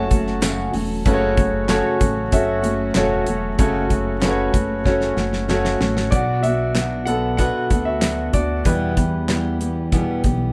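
A straight 4/4 groove from a dry, damped 70s drum kit, with its fat snare, tight kick, hi-hat and handclaps, drives this dramatic piano-driven pop excerpt, shifting from F#m to Bm at 6.1 s. The clear concert grand piano sits up front with audible action noise, deep bass and long sustain, taking solos at the start and again from 6.1 s, while a full-bodied, fingerpicked jumbo steel-string acoustic guitar plays a riff and a glossy, chorused synth bass with a filter pluck anchors the low end. Smooth-topped brass ensemble chords hold in the background until 6.1 s, a drum fill arrives at 4.9 s, and a jingly, band-limited tambourine flicks in very quietly near the top, with the band sounding live in one small room.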